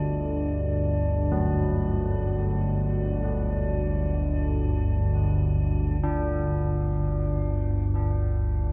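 Ambient and free-flowing in G major, this desolate, dark fragment of a longer piece rests on a low, up-front analog sawtooth drone with lush chorus and a filter sweep from 6.0 s, beneath an eerie, nasal, warbling FM drone with metallic inharmonic color and shimmer reverb, while bronze carillon bells enter at 1.3 s with ringing arpeggios wrapped in diffuse ambient delay and shimmer, all set in a wet cathedral reverb with a 7.2-second decay.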